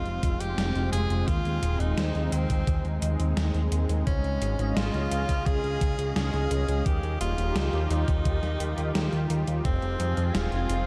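A straight 4/4 pulse at 86 BPM from a thumpy, overdriven electronic kick and a gated 80s digital drum machine with hi-hat and gated-reverb snare drives this moody, nocturnal synthwave excerpt in F minor, where a fat, sawtooth analog bass sits up front beneath a lush, detuned unison pad treated with chorus, phaser and sidechain pumping, while a bright tenor saxophone plays a jazz-style solo with vibrato and scooped notes over Fm, Ab/Eb, Dbadd9 and Ebadd9, in a dreamy mix soaked in huge ambient reverb.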